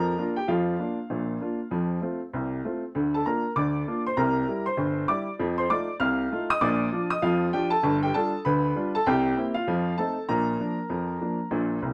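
Ragtime piano in B-flat major, jaunty and playful, moving at 98 BPM in 2/4 with a swung sixteenth-note feel across this roughly 12-second excerpt. A solo upright piano sits up front with a clear, woody, open tone and long sustain, ranging from deep bass notes to bright treble. Moderate studio reverb surrounds it as the harmony circles through dominant sevenths such as C7, F7 and G7 before landing back on B-flat at 10.3 seconds.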